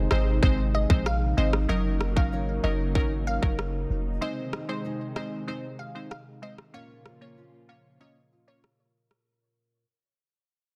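A straight, steady dancehall groove in common time is driven by an electronic island pop drum kit, its tight kick and rim click overdriven and placed up front, with soft clipping on the snare. A deep, boomy 808-style bass with a dark sine tone and a noisy edge anchors the low end until it drops out at 4.2 seconds. Crisp, detuned wavetable chord stabs and a smooth, warbling vintage analog pad, gently chorused and pumping with sidechain compression, carry the harmony from Ab through Gb6 and back to Ab before settling on Bb minor. Above them, a glassy, crystalline wavetable pluck plays the melody with chorus and delay, while a full-bodied, fingerpicked nylon-string guitar arpeggiates in the background, its finger squeaks audible. The mood is hypnotic and tough, the mix is dry, dense and heavily limited, and this fragment of a longer piece fades throughout, easing into a break from 6.7 seconds.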